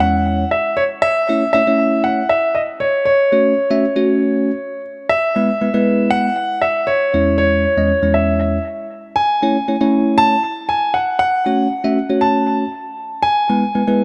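A straight, steady 4/4 pulse carries this confident, bittersweet pop fragment, cut from a longer piece, through two statements of the same phrase, each built as a drop, cycling C#m/E, A, F#m and E. A warm grand piano with long sustain sings the melody up front through an analog delay, while a bell-like tine electric piano, bright, clean and direct, supplies the accompaniment with a phaser. Both play throughout the 14.0 seconds, bathed in a wet spring reverb that gives the mix a heavy, echoing sheen.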